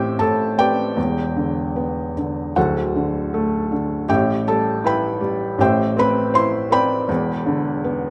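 A felt-muted upright piano plays alone from the start in this wistful, reflective classical excerpt, moving with rubato at around 74-84 BPM in 4/4 through Am7, Em7, D7 and A7 chords across a range from D1 to C6, its soft, mellow, intimate tone heard up front with audible action noise from close, detailed microphones in a moderate recital hall reverb.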